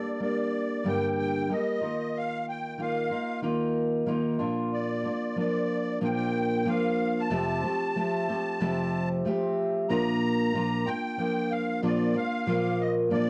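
A reedy, shimmering musette accordion carries the melody in this sunny, easy-going pop excerpt at 93 BPM in Bb major, its close-miked, cassette-tinged tone set over a woody, full-bodied fingerpicked steel-string acoustic guitar with old strings, both up front in a swung 4/4 home cassette recording with a wet studio reverb, moving through chords from Gmadd9 and Ebsus2 to Bb and Fadd9 before a new section arrives at 9.9 seconds.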